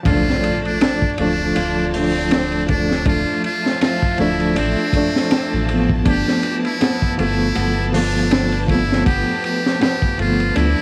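Trip hop at 80 BPM in D dorian, this dark, cinematic excerpt rides a swung sixteenth-note feel in 4/4, moving from Dm to G9 at 6.1 seconds. A crunchy breakbeat kit with a punchy kick, high-tuned snare, hi-hat and ride sits up front, saturated and gritty with a rolled-off top, while a round analog bass blending sawtooth and sine tones holds the low end from D1 to D2. A felt-muted upright piano carries the accompaniment with tremolo and audible action noise, its thick felt giving an intimate, mellow tone. Over this, a trumpet with metal mute plays the melody between C4 and G4, buzzy and thin with light vibrato and a dub echo trailing behind it. In the background, a fingerpicked flamenco guitar adds arpeggios with finger squeak and tape echo, and a lush bowed string section sustains chords. An electronic impact hits from 0.1 to 3.1 seconds, and the cassette home-recording sound, light reverb and vinyl crackle lend the whole a worn, nocturnal haze.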